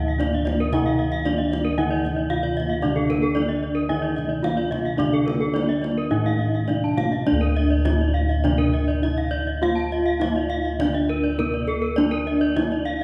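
Balinese gamelan in D pelog at 102-114 BPM in a straight 4/4, brilliant and shimmering, where a close-miked, full bronze metallophone struck with a wooden mallet carries the melody over round, beating bossed gongs up front on the bass line, a vintage, band-limited horn-mallet metallophone accompaniment that drops out at 7.3 s as the second section begins, two horn-mallet metallophones ringing out arpeggios above (one boxy and warm, the other bright and airy, both with shimmering beats from their paired tuning), and a tight kendang played with soft hands that sounds distant, the ensemble heard from further back in a reverberant recital hall in a passage cut from a longer piece.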